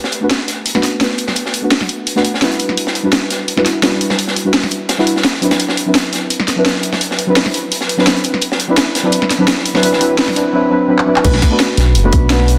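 A gritty, saturated breakbeat kit with a rolled-off top opens this melancholic, dreamy liquid drum and bass excerpt. It is joined almost at once by a cracking, up-front electronic kit with crash, handclaps and hi-hat, and by deep, warbling chord stabs carrying chorus and dub echo through Bm7, Em9 and D13/F#. After the build-up and a drum fill at 11.0 seconds, the drop at 11.2 seconds brings in a tight layered kick and a smooth, detuned sawtooth-and-triangle synth bass, all set in a lush hall reverb with a dense, heavily limited master.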